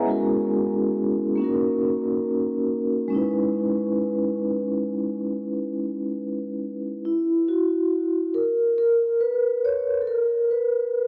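Hazy and reflective, this slow, swung hip hop fragment features a lone vibraphone played with soft mallets, its mellow, ringing tone carrying a medium motor vibrato and sitting close and up front. It drifts through F#7, D#m7 and C#m7 before the chords fall away at 7.0 seconds, when the vibraphone takes a solo turn to the end. Cassette tape colour, analog delay and a lush hall reverb give the home-recorded sound a soft, worn glow.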